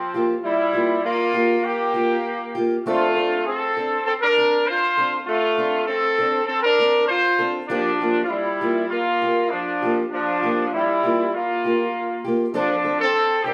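A lightly swung sixteenth-note groove at 99 BPM in 4/4 carries this joyful highlife passage in F major, cut from a longer piece, with harmony moving from Fsus24 through F6 and Bb6/F before settling back on F6 at 12.5 seconds. A tight, vintage-toned horn section sits up front with the melody, its clear pop-style phrasing touched by light vibrato. Beneath it, a fingerpicked acoustic archtop guitar adds bright, fresh-stringed accompaniment, and the band plays live together in one room washed by stone-room reverb.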